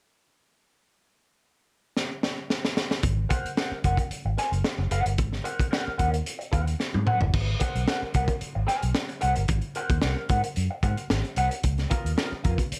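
A gritty funk passage cut from a longer piece opens with a crunchy, saturated breakbeat drum kit rolling through a fill at 2.0 s, its punchy kick, high-tuned snare and dark cymbals sitting up front with a rolled-off top. At 3.0 s a round, foam-muted fingered electric bass settles onto an Ab9 groove, joined by an electric guitar through a small old amp, slightly broken-up and compressed, colored by wah and subtle chorus. Another drum fill arrives before the music shifts to a Db13 chord near the end, all set in light reverb.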